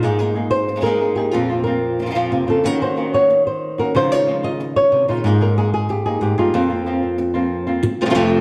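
Set in a dark production with a wet recital-hall reverb, this fiery, intense flamenco fragment cut from a longer piece features two up-front acoustic flamenco guitars playing together throughout its 8.4 seconds: one carries a thumb-plucked melody with audible finger squeak, while the other adds fingerpicked stabs over chords moving from Absus2 through Fsus4, Ebm7 and Dbadd9 to a closing F.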